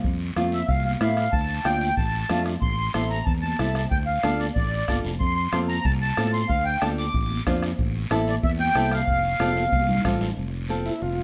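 Joyful and festive, this cumbia fragment centres on a sweet, close-miked accordion solo up front, carried by punchy fingered electric bass, a soft-beatered bombo, raspy guiro, distant high-tuned congas and dark fingerpicked nylon-string guitar in a large studio reverb, with a drum fill from 9.4 seconds before an overdriven, heavily vibratoed vintage combo organ enters at 10.9 seconds.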